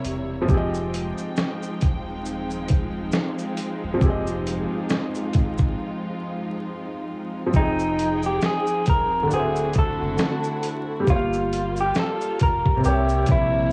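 Crackly with vinyl noise and cassette tape warmth in a small room, this melancholic, nostalgic lo-fi hip hop excerpt in F minor moves at a swung 68 BPM, with gritty, up-front sampler-style drums and a round, deep dub sub bass under a mellow felt-muted upright piano whose action noise is audible and a lush, bowed string section, before a dark, slightly broken-up electric guitar melody joins at 7.6 s over chords drifting from Fm7 through D7 and Gm7b5 to C7b9.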